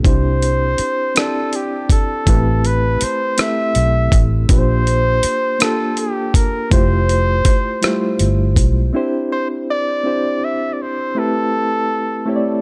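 A solo flugelhorn carries the melody in this tender, sensual slow R&B piece in six-eight, its tone warm and punchy with light vibrato and scooped, pop-style notes. Beneath it, a mellow, reedy electric piano heard through its built-in speakers shimmers with fast tremolo, moving through lush chords such as Cadd9, Am9, Bb69 and Fmaj9. A dusty, gritty sampler-style drum kit with a thumpy kick, hi-hat and rim click sits up front alongside a dark, foam-muted fingered electric bass with an amped, punchy edge. The drums drop out at 8.7 seconds and the bass at 8.9 seconds, leaving flugelhorn and electric piano to carry the closing section alone. A digital ambience surrounds the parts, and the recording is cut from a longer piece.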